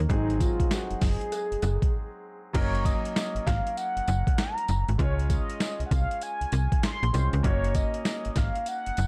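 A swung 98 BPM new jack swing groove in 4/4 drives this upbeat, bouncy R&B excerpt, where a gritty, pitched-down boom bap kit with thumpy kick, tambourine and crash sits up front beside a snappy, metallic-attack FM slap bass, a round horn-like synth lead with chorus, vibrato and digital delay carries the melody over clear, intimate concert grand piano chords moving from Ab7 through Gb6 and Dbmaj7, a very quiet cowbell plays only until 1.8 seconds before a brief break at 1.9 seconds, and the whole is set in dark digital ambience.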